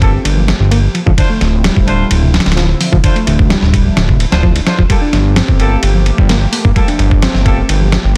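A funky, swaggering breakbeat groove at 129 BPM in G minor opens at once with a gritty, overdriven soul sampler-style drum kit and its thumpy kick up front, a fat, saturated sawtooth bass, a reedy electric piano riff roughened by 12-bit sampler grit and dub echo, mellow punchy horn stabs with vibrato, and a swirling phased analog pad pumping in the background over Gm9 and Dm9 chords in a dense, heavily limited master with faint mains hum.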